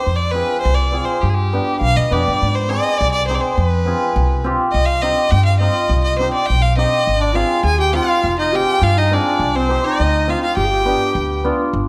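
A straight 2/4 pulse at 103 BPM carries this festive yet soulful klezmer fragment, cut from a longer piece and set in G phrygian dominant with the tuning at A4 = 436 Hz. A single bowed violin leads the melody up front with a clear, focused tone, smooth top and vibrato, while a plucked upright bass with steel strings sits equally forward and sounds woody. A hammered cimbalom fills the accompaniment with a shimmering, ringing sound, and the harmony moves among Fm, G, Ab and Cm, with a new section opening at 2.4 seconds. At 7.2 seconds a warm clarinet joins as a second line, played in a classical style and heard as distant and roomy. A moderate recital hall reverb gives the whole ensemble a sense of space.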